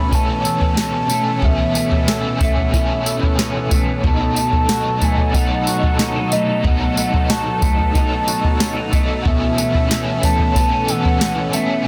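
An up-front soft vintage rhythm box with a deep kick, tonal snare, tambourine and toms drives this dreamy, blissful dream pop excerpt at 92 BPM, where a hollow, woody clarinet-like synth lead with vibrato carries the melody over fingered arpeggios from a clean electric guitar with delay, a double-tracked overdriven electric guitar treated with tremolo, and a swirling, detuned analog pad with phaser sustaining chords that move from Aadd9/B to B7 and back, set in light reverb and a dense, heavily limited master.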